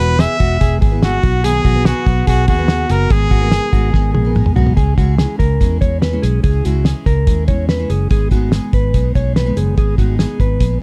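Jangly indie pop at 144 BPM in straight 4/4 carries a bittersweet, restless mood through this excerpt, moving from E and B to G#madd9 before settling on C#m at 4.8 seconds and G#m at 8.1 seconds. A bright trumpet with vibrato and delay sings the melody over a very quiet, ringing vibraphone line struck with hard mallets, both dropping out at 4.4 seconds, while a full-bodied jumbo acoustic guitar, clean fingered electric guitar arpeggios and a round, foam-muted vintage bass keep going underneath. Cloth-damped drums with a fat snare and tight kick play a fill at 3.9 seconds, all set in a small room with a dark production.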